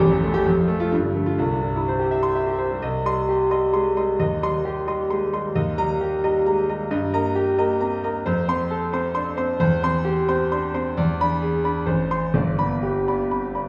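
This classical virtuoso piano study, cut from a longer piece, moves at 132 BPM in a flexible, rubato 3/4, with a heroic, brilliant mood, and its key shifts from C minor into C major at 8.2 s after a new section begins at 2.8 s. A solo concert grand, tuned to A4 = 435 Hz, spans G1 to C6 with a clear, open tone, deep bass and long sustain, sitting up front. It rings in a wet recital-hall reverb that places the listener further back in the room.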